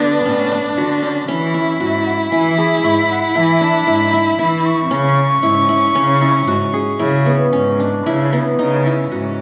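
An airy wooden flute enters at 2.1 seconds with a tongued, straight-tone melody, close-miked and expressive, over plucked, bright-edged qanun arpeggios and two bowed cellos: one playing a soft-attacked, sul tasto second line with light vibrato, the other a nasal, boxy bass with vibrato. This restless, urgent snippet of contemporary chamber music in 7/4 moves from D to C#m7, settling on C#madd9 at 8.6 seconds. The up-front strings sit in the wet reverb of a recital hall, giving the ensemble an intimate yet resonant church-like space.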